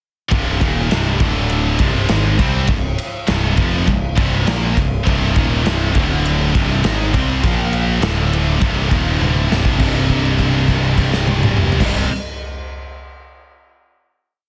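A straight 4/4 heavy metal pulse at 101 BPM drives this dark, epic C minor piece, with a big rock drum kit up front playing a metal drive groove: punchy kick, medium-tuned snare, crash, ride and toms, heard in a big room with a rolled-off top. Three bright, distorted guitars sit in the background playing a power-chord riff: a double-tracked, compressed fuzz guitar and two scooped high-gain guitars, one heavy, all moving through Cm, D5 and Bb5. A growling, overdriven picked bass doubles the riff in driving eighth notes, and after a drum fill from 9.2 to 9.8 seconds the band lands on a final chord held until about 11.8 seconds, all under light reverb and a dense, heavily limited master.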